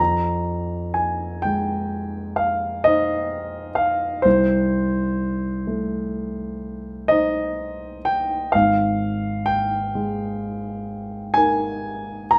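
A moderate stone-room reverb surrounds this 12.4-second passage, cut from a longer impressionist classical piece for solo piano. The warm grand piano sits up front, spanning Ab1 to Bb5 in C minor and drifting in a rubato 9/8 at 42 BPM counted in dotted quarters. Its harmony moves from Fm7 to Cm6 at 4.3 seconds and on to Absus2 at 8.5 seconds, giving a wistful, mysterious mood.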